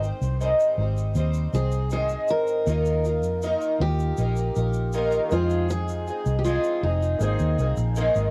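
A dry, homespun cassette recording captures an easy-going, carefree acoustic pop passage at 79 BPM in 4/4, where a full-bodied jumbo steel-string guitar carries the picked melody with finger squeak, cassette tape colouring and tape echo; a shimmering, octave-doubled fingerpicked twelve-string adds boxy, double-tracked accompaniment up front; a very quiet, woody upright piano contributes intimate touches with audible action noise; a dark, round, foam-muted electric bass sits up front; and a grainy, bright egg shaker rests low beneath chords moving from Abmaj7 through Ebsus2 and Fm7 to Abadd9.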